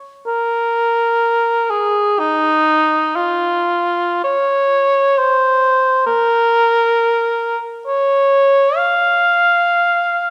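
Meditative and mournful, this short classical excerpt features a solo cor anglais playing freely in 3/4, between 53 and 69 BPM, with expressive rubato. Entering at 0.3 s and moving between Eb4 and F5, the instrument sits up front with a warm tone, soft attacks and light vibrato. A moderate concert hall reverb and a dark production frame the line.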